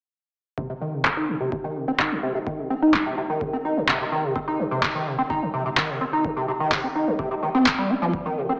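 A squelchy, resonant liquid acid bass leads this driving, raw acid house passage in C minor at 127 BPM, its square-wave riff spanning Bb2 to Eb4 and running through a filter sweep from 0.6 seconds with phaser, overdrive, subtle chorus, analog delay and sidechain pumping. A deep, tape-warm electronic kick sits low in the mix beneath up-front, low-pass-filtered electronic handclaps that join at 1.1 seconds. A plate reverb soaks the whole mix in a dreamy digital ambience with a small-speaker character, in this section cut from a longer piece.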